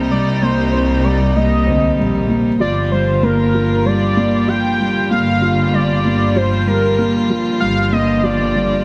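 A felt-muted upright piano carries a soft, boxy riff with audible action noise, setting an intimate, moving tone for this piano and strings electronica cut from a longer piece in G minor at 96 BPM. A velvety sawtooth synth lead with chorus and vibrato sits up front from 0.1 s, carrying the melody, while a lush, bowed double bass section holds the low end. Farther back, a woody string quartet played sul tasto sustains chords over a move from Cm7 to Gm7 at 2.6 s, all in light reverb and studio ambience.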